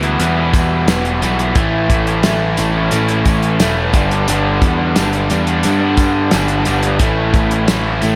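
A straight 4/4 pulse at 88 BPM drives this gritty, brooding classic rock excerpt, as a damped 70s drum kit with a fat snare, tight kick and hi-hat anchors a growling, overdriven picked bass moving through Em, A and G. Two double-tracked, up-front guitars play riffs together, one warm and overdriven, the other a bright, raw garage tone with overdrive, while a faint, jingly tambourine joins at 0.2 seconds. A moderate recital hall reverb gives the whole a big arena sound.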